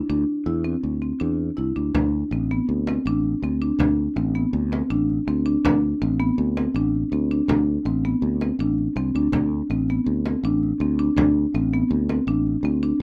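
Contemporary instrumental chamber music in an urgent, hypnotic 5/4 at 162 BPM, this excerpt opens on a soft-mallet marimba playing woody, round arpeggios over a growly, punchy fretless electric bass, moving from Cadd9 to D5 at 1.9 seconds. That is where a deep, large frame drum enters, adding a small-room acoustic resonance behind the up-front marimba and bass. Close, detailed microphones and light reverb keep the sound intimate.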